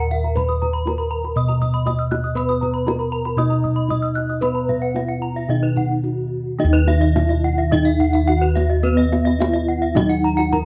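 Bossed bronze gongs sit up front in this brilliant, shimmering fragment of Balinese gamelan, their round, beating tones struck with padded beaters and carrying the bass from Eb2 up to Cb5. Above them a bronze metallophone leads the melody in Eb pelog with a mellow, soft, airy ring from padded disc mallets, its paired tuning producing pulsing beats. Two higher metallophones spin arpeggios with horn mallets: one boxy and warm as if in a small room, the other bright with the same shimmer of paired tuning. Kendang adds tight, acoustic percussion played with soft hands. From 2.4 seconds a lower metallophone joins with a ringing, bright and airy accompaniment, also struck with a horn mallet and shimmering with paired tuning. The music moves at 107-120 BPM in a straight 4/4, shifts into a new section at 6.6 seconds, and has the dry, close sound of a 1970s studio, cut from a longer piece.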